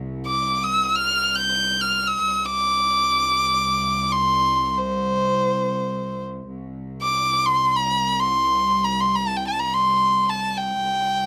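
Arabic maqam ensemble music in free time unfolds in this short passage cut from a longer piece, carrying a passionate yet stately mood. A bowed cello section holds a low drone on C2 from the very start, its ensemble tone lush and biting with vibrato and a smooth top. A single violin enters at 0.3 seconds and carries the melody up front, ranging from C5 to G6 with a nasal, boxy character and an even, vibrato-laden line. The violin sits well above the cello section in level, so the melody dominates while the drone stays in the background. A moderate studio reverb gives the sound a modest sense of space, and the passage presents the same section twice, restating it at 6.5 seconds before both parts end together at 11.3 seconds.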